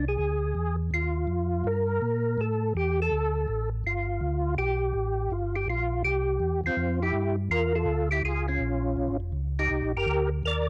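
Swinging at 164 BPM in 4/4, this bluesy, soulful soul jazz organ trio excerpt pairs a percussive tonewheel organ melody, dark and round with third harmonic percussion, slow rotary speaker, chorus vibrato, plate reverb and cassette tape color, over a mellow, clean tonewheel organ bass with its own chorus vibrato and slow rotary, both up front in a snug booth ambience on a home cassette recording, moving from a Bb7 opening through G7 and Gm7 before a second section built on Fmaj9, C#13 and Cm9 from 6.8 seconds.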